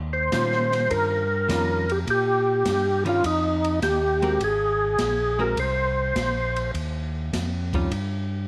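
Bluesy and greasy, this brief cut from a longer soul jazz organ trio piece swings at 103 BPM in Eb mixolydian, with a fat, clean tonewheel organ bass and a gritty, overdriven tonewheel organ melody carrying second harmonic percussion and chorus vibrato, both up front through slow rotary speakers, while a dark, compressed hollow-body jazz guitar picks out an accompaniment and an open acoustic drum kit with a boomy kick and smooth ride sits back in a small room, all moving from Eb9 to Abadd9 at 4.4 seconds under moderate spring reverb.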